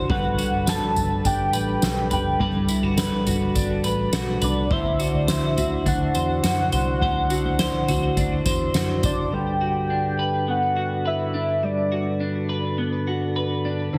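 Drenched in a wet concert-hall reverb yet squeezed into a heavily compressed, radio-like sound, this dreamy, blissful dream pop excerpt in G major drifts at 104 BPM in a straight 4/4, moving from Gmaj7 to D7 and back. A mellow, flute-like tonewheel organ holds sustained chords through a slow rotary speaker, while an up-front, clean semi-hollow electric guitar picks arpeggios through analog chorus and digital delay, and a velvety, detuned sawtooth synth lead carries the melody with chorus, tremolo and delay until 12.2 seconds. Underneath, a dark, foam-muted fingered bass and a soft-mallet drum kit with a fat snare, boomy kick, tambourine and toms play until about 9.3 seconds, leaving the organ, guitar and lead to float on by themselves.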